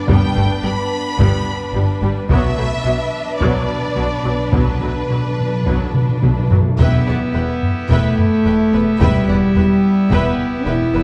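This dramatic, heroic excerpt from an epic orchestral film score opens at 108 BPM in 4/4, with a lush, expressive violin melody over a distant, intense second violin line and dark, tight French horn chords. Smooth, close violas, focused double basses and a very quiet cello section fill out the lower strings, while heavy-stick taiko drums sit in the background, with hard-mallet timpani joining at 2.3 seconds over chords moving from G to B minor. At 6.8 seconds, as the harmony turns to E minor, a bright, brassy pipe organ trumpet stop with baroque voicing and audible chiff adds sustained chords, all bathed in a wet scoring-stage reverb.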